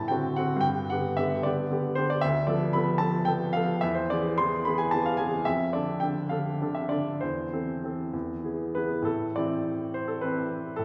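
A clear, woody upright piano opens this stormy, passionate romantic character piece, played alone in 6/8 at 64-78 BPM with free rubato in A minor. Up front in a reverberant recital hall, it ranges from D2 to C6, moving through shadowed harmonies that settle onto E before resolving to A minor at 9.1 seconds, where a new section begins. The recording is a short fragment cut from a longer work, ending at 10.8 seconds.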